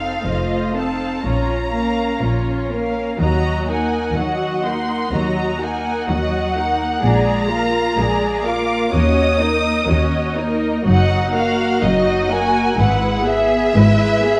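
From the first moment a full string orchestra plays together in this elegiac, melancholic slow romantic movement at 62 BPM in a rubato 4/4, with a rich, distant violin section carrying the vibrato-laden melody high above, a second violin section adding a soft-attacked line with expressive portamento, an up-front viola section giving smooth, even accompaniment, a focused cello section in the background, and a lush double bass section gliding with portamento underneath, all bathed in a wet scoring-stage reverb as the harmony settles into Eb minor from 10.9 s in this fragment of a longer piece.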